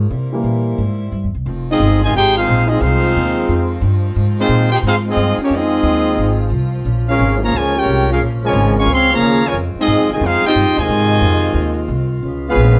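Dramatic and swinging, this jazz excerpt in F minor moves at a brisk 178 BPM. A woody pizzicato upright bass sits up front under a distant, roomy saxophone section holding very quiet sustained chords, while a warm grand piano briefly appears at the start. At 1.7 seconds a clear, present trumpet section takes the melody with light vibrato, alongside a close-miked trombone section on a second line, all captured live in one room with moderate studio ambience over chords moving from C7 through Fm7 and Bbm7 to Db7.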